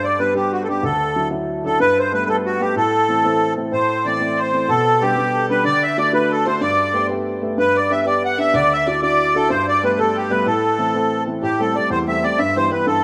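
A rough home demo sound, bathed in a moderate plate reverb, frames this short cut from a longer Celtic folk jig in A dorian, moving at 125 BPM in 6/8 with a dark, lively and driving mood. Up front, a reedy accordion with light tremolo tuning carries the melody from the start, its tone sweet and airy. Beside it, a woody upright piano supplies the accompaniment throughout, natural and close. At 3.7 seconds a single bowed fiddle slips in behind them with a second line, nasal and earthy with light vibrato, sitting distant in the background. The harmony cycles through G, Dadd9, Gadd9 and Am before turning to Am7 and Em/G as a new section begins at 11.4 seconds.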